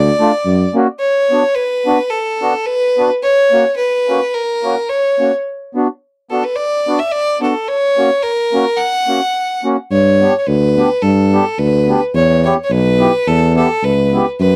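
This dry, close recording has a 1970s studio character, with light reverb and a jolly, festive air. It is a short cut from a longer alpine folk dance tune in B minor, moving at 108 BPM in a lightly swung 2/4. A bowed fiddle carries the melody from start to finish, its tone clear and focused with light vibrato and a touch of slapback echo. Beneath it, a reedy, dark accordion fills in the harmony with a smooth, slowly beating sound. The tuba, clear and roomy with transformer saturation, sounds a brief bass note at the opening and then returns at 9.9 seconds to anchor the close. The chords move mostly between Bm and F#, then turn to G and Em near the end.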